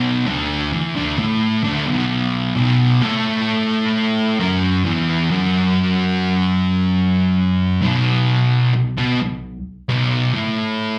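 Metal with a heavy, sludgy mood at a slow pace in 4/4, this 11-second excerpt cut from a longer piece features a lone double-tracked fuzz guitar, picked and distorted, sitting up front in a low register as it moves from Bm to B5 at 2.6 seconds, heard as a live gig through the venue's PA with moderate club reverb.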